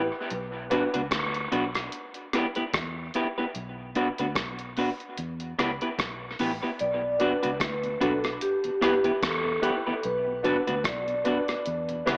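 This meditative, hypnotic dub reggae excerpt at 74 BPM in B minor cycles between Bm and Em. It opens with brief, woody upright piano stabs over a dark, foam-muted electric bass, with a gritty, compressed sampler-style breakbeat kit (thumpy kick, hi-hat and rim click) and an up-front, clean semi-hollow guitar joining within the first second. At 6.8 seconds a ringing, close-miked vibraphone takes the melody, soon joined by the returning piano and a mellow, very quiet tonewheel organ through a rotary speaker, while dub echo trails the piano, drums, guitar and vibraphone and a wet spring reverb with an AM radio coloring shapes the whole sound.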